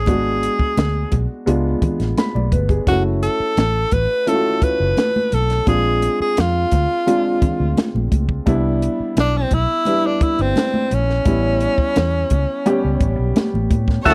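This lush 1970s-style soul excerpt opens with a breathy tenor saxophone carrying the melody in a smooth, romantic mood, over a baby grand piano, a round, foam-muted fingered electric bass and a compact cocktail drum kit, with congas sitting in the background. The tempo is an unhurried 86 BPM in a straight 4/4, and the harmony moves through G#m7b5, C#7b9, F#m7, Bb9, Cmaj9 and A9. The up-front saxophone has a clear jazz-style tone with vibrato and scooped notes, while the warm, natural-sounding piano adds a fill at 1.8 seconds. The dark, amped bass stays up front, and the drums have a punchy kick, a high-tuned snare and a rolled-off top, with ringing, high-tuned congas played with soft hands. The saxophone drops out at 13.4 seconds, and at 14.1 seconds a bright, bowed string section with intense vibrato enters on a second line, joined by a lightly overdriven tonewheel organ holding chords through a slow rotary speaker with audible key click. 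The dry, close studio sound has little reverb, giving the recording an intimate 1970s character.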